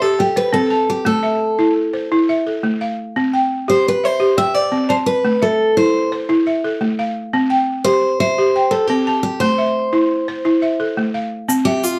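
A flowing, straight 12/8 pulse carries this warm West African traditional excerpt, where a woody, buzzing balafon, struck with rubber mallets, spins up-front arpeggios alongside a dark, picked steel-string acoustic guitar melody with finger squeak and plate reverb, and a grainy egg shaker slips in briefly at 11.5 s, all set in a small room heard from a little way back.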